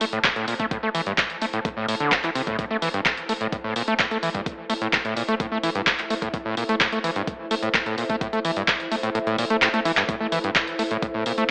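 An AM-radio haze and a lush hall reverb wrap this raw, driving acid house excerpt in A minor at 128 BPM, where a squelchy, gritty overdriven acid bass riff sits up front over punchy, tape-warm analog drum machine handclaps and hi-hat, a thumpy overdriven electronic kick that enters at 0.2 seconds and drops out from 9.2 to 10.1 seconds, with a drum fill arriving at 9.6 seconds, and an ethereal airy pad fading in, mellow and pumping in the background.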